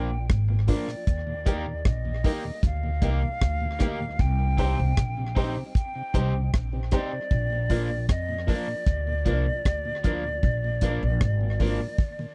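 A deep, dry reggae drum kit with a tight kick sits up front in this uplifting roots reggae piece at 77 BPM, alongside a woody, growly pizzicato upright bass, short natural stabs from an upright piano, a twangy, slightly broken-up electric guitar with tape echo, a dark, round tonewheel organ with key click, slow rotary speaker and tape echo in the background, and an airy, hollow concert flute melody with vibrato and tape echo, all moving through Bb, Eb and Cm in a close 1970s-style studio sound before a drum fill at 12.0 seconds.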